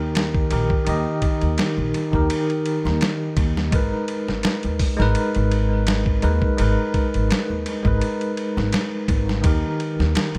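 A bell-like tine electric piano, bright and up front with tremolo and tape echo, provides the accompaniment in this melancholic, cinematic trip hop excerpt at 84 BPM in G# harmonic minor, over a woody, dark pizzicato upright bass and a gritty, compressed sampler-style drum kit with a thumpy kick, hi-hat, snare and ride soaked in dub echo, the echo-heavy mix moving from D# to G#madd9 at 3.7 seconds and back to D# at 9.4 seconds.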